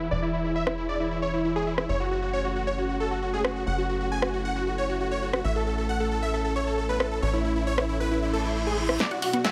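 Soaring and euphoric, this short cut from a longer uplifting trance piece runs at 135 BPM in a straight 4/4, moving through E, F#m and A before landing on Bm. Huge, detuned supersaw chords carry the melody up front, their sawtooth and square-wave layers with a sub octave shaped by a low-pass filter, delay and sidechain pumping. Beneath them a thick, warbling unison pad holds sustained chords with a slow attack and long release, treated with chorus, while a tight, driving sequencer bass with a moving notch pumps along in the low register until 9.0 seconds. A punchy, tape-toned analog drum machine joins at 0.7 seconds with hi-hat, rim click and snare, its hats and cymbals filtered and pumping, and an electronic reverse cymbal rises from 8.3 seconds into a drum fill. In the final half second a bright, noise-layered unison pluck, a round, vintage analog pluck playing arpeggios in the background, and a very quiet electronic kick drum enter, all sitting in light reverb and digital ambience.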